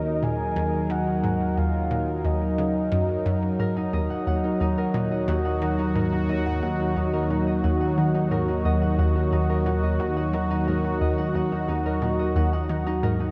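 Ambient, sequencer-driven space music at 89 BPM in Eb minor, expansive and mysterious, resting on a single Ebm chord as a bright, evolving resonant pad sits up front with slow-attack sustained chords and a fat, nasal analog bass holds a low Eb. A round, detuned analog pluck repeats a riff in the background with chorus and analog delay, while a soft, dark octave-layered synth lead with vibrato sings a brief melody that stops at 3.2 s. At 3.6 s a ringing, thumb-plucked Celtic harp enters with delayed arpeggios, all within a dreamy mix soaked in a huge reverb.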